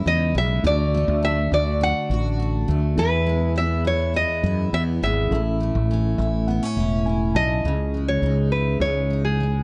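A straight 4/4 pulse at 103 BPM carries this easy-going, heartfelt acoustic pop excerpt, cut from a longer piece. Up front, a fingerpicked nylon-string guitar with a deep classical body sings the melody between G#4 and F#5, while a round, punchy fretless electric bass anchors the low end with a dark, direct, amped tone. A picked, double-tracked steel-string acoustic guitar fills in the middle with a jumbo, full-bodied sound and audible finger squeak. In the background, a mellow, reedy electric piano with a fast tremolo plays clean accompaniment through its built-in speakers, adding a fill from 5.9 to 7.6 seconds before dropping out at 7.7 seconds. The chords move from C#madd9 through D, E and A before returning to C#madd9 as a new section begins at 7.6 seconds, all set in light reverb and small room ambience.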